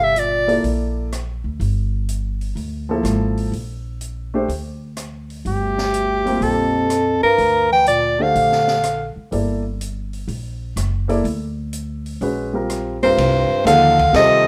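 Spiritual and intense, this modal jazz piece swings at 124 BPM in G dorian, its warm soprano saxophone carrying the melody up front with a soft-attack subtone and light vibrato, shadowed by a mellow, distant bass clarinet with scooped notes, the two returning together at around 5.5 s and again at 13.0 s. Beneath them, a woody pizzicato upright bass and an up-front baby grand piano with short sustain keep the accompaniment going, while an open acoustic drum kit adds dark cymbals, a high-tuned snare and a boomy kick within a moderate large studio reverb. The harmony rests on Gm9 before shifting to Cm9 at 13.2 s.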